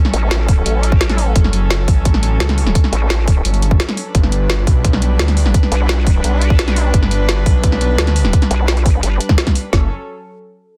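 A nasal, wobbling vowel-sweep bass with a resonant formant filter and chorus sits up front in this aggressive, futuristic slice of dark technical drum and bass at 172 BPM in F# Phrygian, joined from 1.4 seconds by a thick, detuned saw bass driven with overdrive and sidechain pumping. Two layered electronic drum kits carry the drop, one with a tight kick and woody snare, the other adding metallic hats, both re-recorded in a small room. Beneath them a reedy, gut-string chamber string section holds sustained chords moving from F#m to G, roughened by vintage 12-bit sampler grit and sidechain pumping, all in a dry, dense, heavily limited mix.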